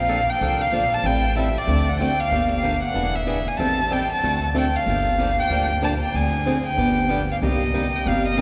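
A brisk 188 BPM swing in 4/4 drives this virtuosic excerpt of acoustic jazz manouche in G minor, tuned slightly flat at A4 = 437 Hz and cut from a longer piece. Up front, a bowed violin carries the melody with a soft attack, light vibrato and an intimate sul tasto tone, while a woody, thumpy pizzicato upright bass on gut strings holds the low end and a bright, boxy picked acoustic guitar joins at 0.1 s with swing accompaniment. The harmony moves from Bbmaj7 through Am7, D7 and Gm7 toward Cm7, and the performance sits in a long, wet cathedral reverb that suggests a church or concert hall.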